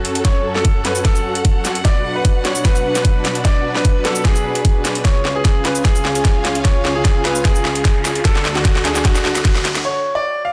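Menacing and chaotic, this half-time heavy wobble dubstep build-up, cut from a longer piece, sets a brilliant concert grand piano melody with digital delay over huge detuned supersaw chords and bowed symphonic strings, both pumping from sidechain, while a knocking overdriven electronic kick sits up front beside a drum fill of huge snare, metallic hi-hats and shaker, a very quiet riser enters at 7.6 seconds, and a brief break at 9.8 seconds leaves the piano alone until 10.5 seconds in a dense, heavily limited master.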